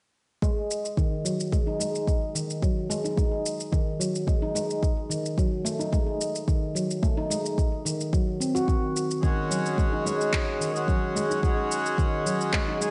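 Organic downtempo at 109 BPM in 4/4, mystical and earthy, cut from a longer piece: a ringing, nitrided-steel handpan with a vintage, band-limited tone plays up-front arpeggios with sharp finger strokes through a low-pass filter, delay and slapback echo, over a deep, tape-warmed electronic kick and a layered electronic shaker and handclaps. At 9.2 seconds a reedy, nasal, breathing harmonium joins as accompaniment, pumped by sidechain and carrying delay and slapback echo, as the chords move from D#madd11 through D#dim7 to G#7sus4/D#. The mix sits in a wet recital hall reverb with a big arena sound and a top end that stops at 10.8 kHz.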